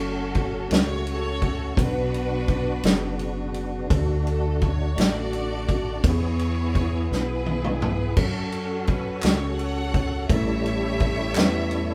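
A small, reverberant room holds this reverent, hopeful slow gospel excerpt in 6/8, where a lush, bowed string section carries the melody over a mellow tine electric piano, a reedy tonewheel organ with key click and a slow rotary speaker, and a round, punchy fingered bass, while an up-front acoustic drum kit enters at 0.3 seconds and plays a fill at 7.1 seconds, and distant, crisp handclaps join at 9.2 seconds.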